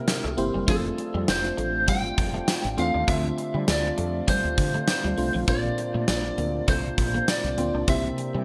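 A lightly swung 16th-note groove at 100 BPM in 4/4 drives this uplifting, glossy 1980s-style pop excerpt in F major, anchored by a punchy gated drum kit of kick, medium-tuned snare, hi-hat and tambourine up front in a bright stone room, with a woody, hollow-body fretless bass entering at 0.2 seconds. A glassy, bell-like FM electric piano with chorus and a twangy, scooped clean electric guitar riff sit beneath a slightly broken-up lead guitar melody coated in lush chorus and digital delay, while a mellow, distant French horn section holds sustained chords in the background. The chords move from C7 through F6, Dm7 and Bbadd9 and back to C7, all set in a polished digital production with a moderate plate reverb.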